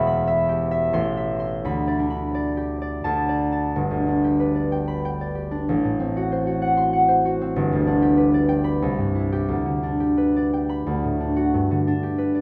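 A solo concert harp opens the passage, its warm, thumb-plucked tone ringing up front in a moderate recital-hall reverb. This dreamy, peaceful classical fragment in a rubato triple metre spans from E1 up to C6. The harmony drifts from E minor through A minor seventh before a new section settles at 3.8 seconds and comes to rest on G by 11.5 seconds, just before the 12.4-second cut from a longer piece.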